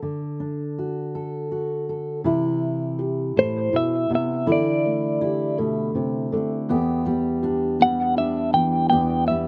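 A clean, compressed electric guitar carries the melody with tremolo and slapback echo from 3.4 s, up front over a dark, full-bodied fingerpicked dreadnought acoustic guitar with audible finger squeak and a soft, felt-muted upright piano that adds mellow arpeggios from 2.3 s, in an intimate, heartbroken acoustic folk-pop ballad at 54 BPM in 6/8 that moves from D through Cmaj7 and D9sus4 to Em7, captured dry outdoors and cut from a longer piece.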